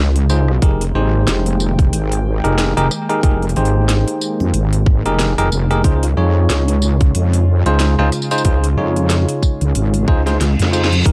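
Gritty and funky, this glitch hop excerpt moves at 92 BPM in 4/4 with a swung sixteenth-note feel, cycling from Dbmaj7 to Fm11 and back to Dbmaj7 at 5.8 seconds. A heavy, saturated wobble bass sits up front, its detuned sawtooth and sine layers thickened by chorus and tube saturation, while a tight electronic kick lands at 0.6 seconds. Around them, a layered drum kit adds a cracking snare, crisp hi-hats, rim clicks and tambourine, both drum parts carrying a tape-warm tone and studio reverb. Bell-like tine electric piano stabs ring out bright and clean, pumping against the beat and trailed by tape echo, as a warbling, nostalgic pad holds slow-attack chords in the background through chorus, phaser and sidechain pumping. The whole cut has a dry, cassette-tinged hardware grit, and in the closing moments a reverse cymbal enters at 10.3 seconds, joined by a drum fill at 10.4 seconds.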